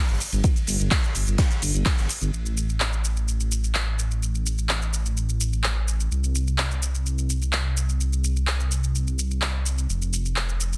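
A dark, detuned saw bass rumbles up front in the low register throughout this driving, dreamy progressive house excerpt in A minor at 127 BPM, its beating sawtooth tone pumping against the sidechain. A smooth deep house kit of handclaps, hi-hat and shaker runs the full length with pumping on its hats and percussion, while a deep electronic kick enters at 0.4 s and a gated 80s kit adds bright ride cymbal and medium-tuned snare in an airy stone room until 2.2 s. The sound is dense and heavily limited, set in small room ambience.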